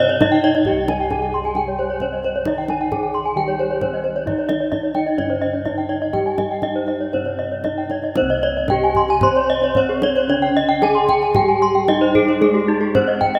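In a straight 4/4 at 113-133 BPM, this shimmering, hypnotic Balinese gamelan excerpt in C pelog sets a wooden-mallet bronze metallophone melody with slapback echo over a background metallophone accompaniment, round, airy bossed gongs carrying the bass, deep soft-handed kendang, and two horn-mallet metallophones playing arpeggios (one bright and up front, the other boxy), the metallophones beating with paired-tuning shimmer in a lush hall reverb and a rough home demo mix that shifts into a new section at 8.2 seconds.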